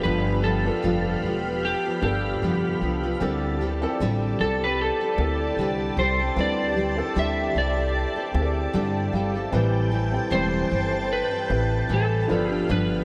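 Indie pop at 76 BPM with a lazy sixteenth-note swing, this mellow, hazy excerpt drifts through G7, D7sus4 and Am7 in a dreamy mix soaked in an enormous ambient reverb. A slightly broken-up electric slide guitar carries the melody through analog chorus and delay, over a fingerpicked nylon-string guitar with audible finger squeak and a touch of chorus and vibrato, a dark, boxy upright piano full of action noise, and a soft-attack, organ-like vintage string ensemble holding sustained chords. An up-front, thumpy pizzicato upright bass with woody gut strings anchors the low end from 0.1 seconds, and the piano slips in a fill at 8.3 seconds.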